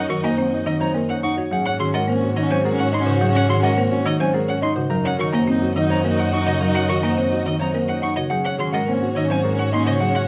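A clean, fingered electric guitar carries the melody over woody marimba accompaniment, dark piano arpeggios with audible action noise, focused solo violin arpeggios, a mellow soprano saxophone second line, lush sustained chords from a bowed violin section and a smooth double bass section in this propulsive, bright minimalist classical pattern piece at 106 BPM in 3/4 and Ab mixolydian, alternating between Gb6 and Ab9sus4 chords and cut from a longer work, with close, detailed microphones, light reverb and a layer of vinyl crackle.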